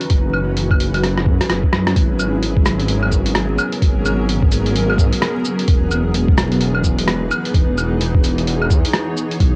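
Wistful and ghostly, this short future garage cut at 129 BPM in G# minor sets a blurred, granular cloud pad holding sustained chords from F#9sus4 through G#m11 to Emaj7 over a menacing detuned saw bass with a filter swell and sidechain pumping, while a muffled, pitched-down sampler-style kit of cabasa, claves, hi-hat and rim click and a thumpy overdriven kick ride a 60% swing, with a drum fill from 1.0 to 2.0 seconds, all steeped in cassette tape and vinyl crackle.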